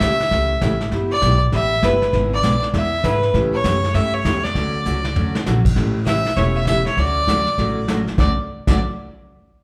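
Western swing country with a playful, down-home mood: this short cut from a longer piece bounces along with a swung 4/4 feel. A single bowed fiddle carries the melody, its clear, earthy tone touched with light vibrato and sitting up front in the mix. A picked steel-string dreadnought guitar supplies bright accompaniment with the snap of fresh strings, while a pizzicato upright bass on gut strings gives a woody, thumpy low end. A vintage kit played with brushes keeps time with a smooth, dark, rolled-off sound, a medium-tuned snare and a tight kick, and it adds a fill from 4.9 to 5.5 seconds just before a new section begins at 5.8 seconds. The harmony moves through jazzy chords such as A7, G69, E7/G#, A6 and Dmaj7, and the band plays live together in one room with a moderate large-studio reverb.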